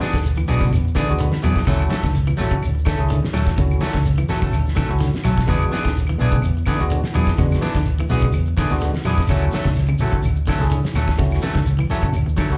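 A dark, round fingered electric bass sits up front in this joyful, hypnotic afrobeat excerpt at 126 BPM, its punchy, amped tone anchoring a straight 4/4 groove over alternating E7 and Dmaj7 chords. A cloth-damped drum kit with a fat snare, tight kick, hi-hat and a rolled-off top thuds beneath, while close, dry, low-tuned congas, a grainy, mellow shekere and woody claves add quiet layers of percussion in the background. Two twangy electric guitars at the edge of break-up join the groove: one plays stabs with slapback echo from the background, and the other plays arpeggios coloured by tape echo and slapback. A barky tine electric piano, lightly overdriven and run through phaser and slapback echo, provides accompaniment and plays a short fill from 0.7 to 1.7 seconds. The sound is that of a live gig heard through the venue's PA, with light club reverb, and a drum fill arrives at 12.1 seconds as the cut ends.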